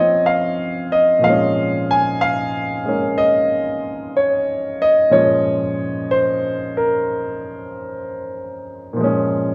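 A grand piano opens alone on a Bb minor seventh chord, setting a late-night, swinging mood in solo jazz. The tempo is slow at 62 BPM in 4/4, with a gentle swing on the eighth notes. The piano carries the whole performance from 0.0 to 9.5 seconds, ranging from Bb2 up to Ab5 in Bb minor. Its tone is warm and natural, and it sits up front in the mix. A generous large-studio reverb, about 1.1 seconds long, wraps around it and lends the sense of hearing the room from further back. This short passage is cut from a longer piece.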